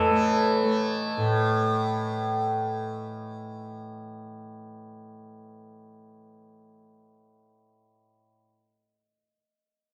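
A straight 4/4 pulse at 116 BPM underlies this meditative, devotional fragment of Indian classical music in raga yaman, centered on A. A hammered santur carries the melody between A4 and D#5, its ringing, shimmering tone given a slapback echo. Beneath it, an up-front tanpura holds a bright, buzzing drone from A2 to A3, softly plucked throughout. The santur falls silent at 3.0 seconds, leaving the tanpura to sustain alone until 8.3 seconds. Recorded outdoors with a light reverb, the sound is open and unenclosed, suiting the devotional calm.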